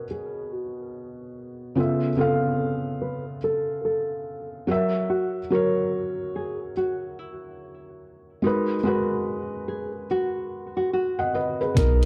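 A dark, warm-sounding lo-fi hip hop piece bathed in moderate spring reverb, dreamy and cosy with a gentle swing. A soft, felt-muted upright piano accompanies from the start through Bmaj7, C#7alt, F#7 and G#m9, while a thumb-plucked nylon-string guitar carries the melody from 0.1 seconds with audible finger squeak; both are low-pass filtered, and the guitar also runs through analog delay. At 11.8 seconds a gritty, thumpy boom bap drum kit with hi-hat and kick, a round dub sub bass and a barely audible deep ambient pad enter just before the cut.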